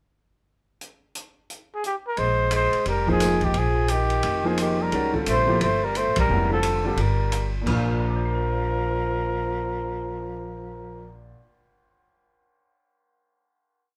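A breathy, whispered trumpet carries hook-like motifs with scooped notes up front in this searching, hypnotic modal jazz piece, joined by a clear tenor saxophone harmony line mostly in thirds, a woody pizzicato upright bass in a two-feel, syncopated quartal comping on a clear baby grand piano from 3.1 seconds, and a dark-cymbaled small-room drum kit with a boomy kick and a ride pattern that drops out at 7.8 seconds, all moving through suspended chords to a band accent at 6.1 seconds and a final Bb chord in light reverb.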